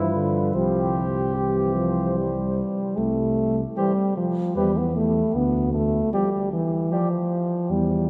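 A wet cathedral reverb with a long tail surrounds this brass quintet, and the top end is gently rolled off, giving the recording a soft, spacious sound. It is a short cut from a longer classical piece in triple metre, with a triumphant, noble mood carried over a progression that settles from G7 onto C and later moves through E minor. The cornet carries the melody with a light vibrato, close-miked yet sitting in the background, while a warm flugelhorn plays a second line that sounds distant and roomy. Up front, a dark French horn with a smooth top and light vibrato plays the accompaniment, joined by a mellow, punchy trombone that stays very quiet beneath it. The close-miked tuba anchors the bass up front. The cornet, flugelhorn and trombone stop at 7.1 seconds, leaving the horn and tuba to sound on until 8.1 seconds.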